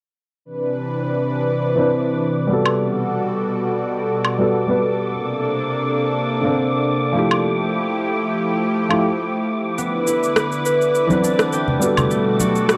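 Swung sixteenths at 103 BPM in 4/4 carry this sunny, smooth sunset chillout excerpt in C major, where a lush, detuned sawtooth unison pad holds chorused chords from the start, an airy, breathy wind-like noise texture hovers high, a worn, mellow grand piano with audible action noise, 12-bit sampler grit and delay plays accompaniment under a filter sweep, up-front overdriven electronic woodblock, cabasa and rim click enter at 2.7 seconds, a ringing, fingerpicked concert harp adds arpeggios with delay from 9.8 seconds, and bright soft-handed congas join briefly at 11.1 seconds, set in a dark production with moderate scoring stage reverb.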